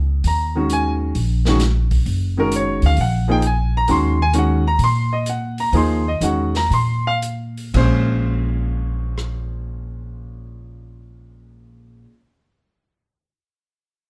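Searching and hypnotic, this modal jazz excerpt in Bb minor moves with a swung 4/4 feel at 112-132 BPM, easing into a slowdown between 3.9 and 7.7 seconds. Pizzicato upright bass sits up front with a woody, thumpy tone on steel strings, running from the very start to 12.0 seconds. A clear concert grand piano, open and deep in the bass with short sustain, carries the harmony from 0.3 seconds, resting first on Ebm7 and then shifting to Bbm9 at 7.7 seconds. An acoustic jazz kit sits well back in a studio room, its dark cymbals, medium-tuned snare, rim click, hi-hat and boomy kick dropping out at 9.3 seconds. Light reverb gives the trio a modest sense of space.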